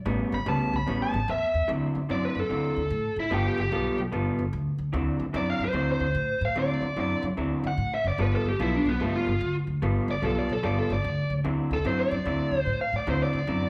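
Heard as a band playing live together in one large studio, the recording carries a moderate reverb tail around the players. This gritty, laid-back electric blues shuffle swings its eighth notes and moves through the chords A9, D9 and G9, cut from a longer piece. Up front, an electric guitar through a small old amp plays the riff with a slightly broken-up, compressed, lo-fi tone. Underneath, a plucked upright bass with steel strings sounds woody, growly and bright, sitting forward in the mix. Over the top, a biting lead guitar enters at 0.3 seconds with a warm, overdriven, picked solo that runs until the music stops at 13.7 seconds.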